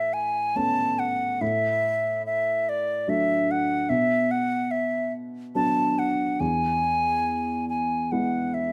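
Nostalgic and tender, this brief fragment of a Celtic slow air in 3/4 drifts in rubato around 71 BPM, with an airy, straight-toned baroque flute carrying the melody up front over a dark, mellow upright piano whose audible action noise lends an intimate, vintage feel, all captured by close, detailed microphones in light reverb as the harmony moves from Aadd9 through D/A and Bm to E.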